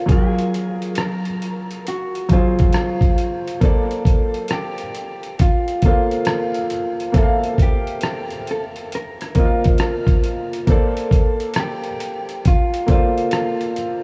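Lo-fi hip hop at a relaxed 68 BPM in Bb major, this dreamy, nostalgic cut from a longer piece swings gently over a gritty, sampler-style drum kit whose thumpy kick, hi-hat and rim click sit up front, re-recorded in a small room. A felt-muted upright piano plays intimate accompaniment through Gbmaj9 and Bbmaj9 chords, its thin felt and audible action noise softened by cassette tape and a low-pass filter. A dark, clean, fingered electric guitar carries a narrow melody between F4 and Bb4, all set in light digital reverb with vinyl crackle and small room ambience.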